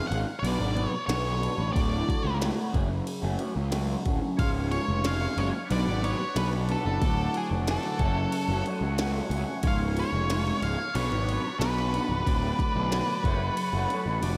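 A straight 4/4 pulse at 91 BPM drives this dark, trippy psychedelic rock excerpt. A glitchy electronic drum kit of deep kick, tiny snare and ride cymbal plays until its kick and snare drop out at 13.6 seconds, under a punchy, up-front overdriven fuzz bass. A slightly broken-up, double-tracked electric guitar through a small old amp plays a phased riff, while a distorted octave-fuzz lead guitar carries the melody through analog delay; a buzzy vintage combo organ with light vibrato enters at 4.4 seconds to hold sustained chords in the background over changes among Bmadd9, D, C# and F#m, all within a dreamy mix soaked in lush hall reverb.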